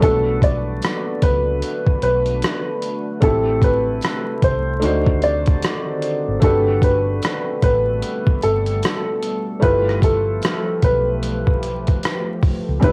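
Crackling vinyl and home-cassette haze with light reverb frame this reflective, nostalgic lo-fi hip hop excerpt, where a woody, slightly detuned upright piano carries the melody over a felt-muted upright piano's intimate chords with audible action noise, a deep, moody sawtooth pad in the background, a round, foam-muted electric bass, an up-front, gritty, pitched-down boom bap kit swung on sixteenths with thumpy kick, hi-hat and rim click, and a very quiet, jingly tambourine entering at 0.8 seconds.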